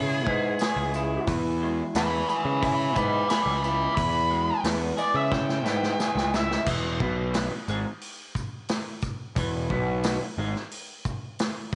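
This trippy, kaleidoscopic psychedelic rock excerpt opens on a dark, distorted, bluesy lead guitar soloing through wah and slapback echo. Beneath it sit a bright, twangy, slightly broken-up rhythm guitar riff with harmonic tremolo and a punchy fuzz bass placed up front. A vintage drum kit with a tight kick, a medium-tuned snare and a rolled-off top joins almost at once, with a jingly tambourine in the background. A drum fill from 5.3 s leads into a new section at 6.7 s, where the solo ends, and the rhythm guitar and bass stop at 10.5 s, leaving drums and tambourine in light small-room reverb.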